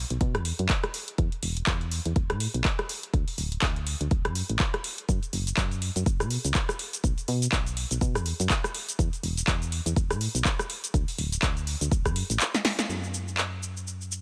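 The sound is dry and close, with the parts placed up front in a compact, bittersweet yet energetic piano house excerpt cut from a longer piece. A round, dark FM bass with a fast attack and decaying notes pulses under sidechain pumping, moving through a low register from the very start. A tape-warm analog drum machine brings a punchy snare, handclaps, hi-hat, rim click and shaker, with a short room touching the snare, clap and hats, all riding a gently swung sixteenth-note feel. A layered electronic kick hits hard beneath them before dropping out at 12.1 seconds. A drum fill from 12.5 seconds and a band accent at 12.8 seconds lead into a brief new section at 12.9 seconds, where bass and drum machine carry on to the end.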